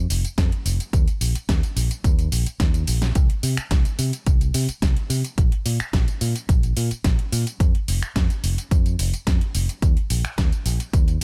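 A dark, round fingered electric bass opens this sensual, cosmic nu-disco excerpt in straight 4/4 at 108 BPM. An overdriven pop kit of finger snaps, metallic hats, a fat snare and tambourine joins almost at once, with a drum fill at 2.6 seconds. A punchy, up-front electronic kick enters at 0.4 seconds, all in a dry, close-sounding mix.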